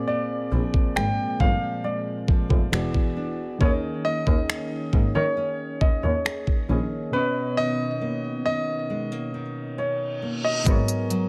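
A small room ambience frames this moody, late-night piece of contemporary R&B, a short cut from a longer piece. Soft, round electric-piano-like synth keys with a warbling, vintage chorus and a nylon-string guitar fingerpicking full-bodied classical arpeggios begin together, while a dark, mellow concert grand piano carries the melody up front with a touch of delay. A bowed double bass, rich and focused yet distant, joins at 0.5 s with vibrato, and an electronic, produced drum kit arrives at 0.7 s with a knocking kick, smooth hi-hats and finger snaps, its tape-warm sound placed close. The harmony drifts through chords such as A#7, E9 and Bmaj9 before a break opens at 7.1 s. An electronic reverse cymbal rises at 10.1 s, leading into a closing G#m11.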